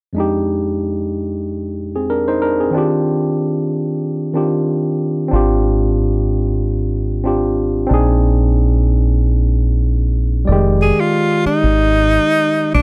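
A dry, close 1970s-style studio sound frames this sultry, late-night neo-soul R&B cut, where a bright, barky tine electric piano with light overdrive lays down Fm9 to Ebmaj9 to Ab6 to Bb7sus4 chords over a gently swung groove, a round, punchy dub bass enters at 5.3 seconds, and a breathy, close-miked tenor saxophone with vibrato takes a jazzy solo line from 10.8 seconds.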